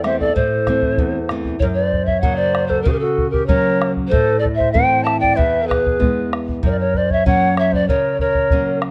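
A mellow pan flute leads this short cut from a longer Andean folk piece, its airy, wooden tone carrying the melody up front with vibrato, a soft attack and rolled-off highs. Beneath it, a large quena plays a second line at a lower level, end-blown and tongued, airy and expressive with its own vibrato. A fingerpicked nylon-string guitar supplies classical-style accompaniment, sitting forward in the sound, while a bombo adds deep, dark beats that sound close and dry. The tune moves at 96 BPM in a straight 2/4, its harmony shifting among Am, F#, and E chords. The mood is festive yet wistful, and the recording is close and detailed, touched by light reverb.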